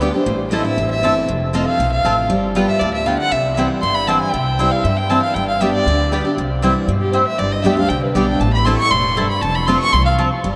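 A dark, woody fiddle with light vibrato and a smooth top carries an up-front bowed solo through this brief, rustic and joyful bluegrass clip in C major at 236 BPM, backed by a bright, full-bodied picked dreadnought guitar with audible finger squeak, round double-string mandolin stabs and a thumpy pizzicato upright bass, all set in a vast, echoing space with a huge ambient reverb over a progression that moves from Am and F through G7 to C.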